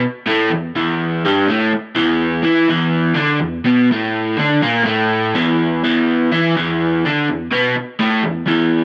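A home cassette recording with digital ambience frames this raw, gritty rock fragment in E minor at 124 BPM, cut from a longer piece, where a lone crunchy, bright electric guitar, picked, double-tracked, overdriven and placed up front with a tape-worn tint, plays by itself from 0.0 to 8.8 seconds in straight 4/4, tuned slightly sharp to A4 = 441 Hz.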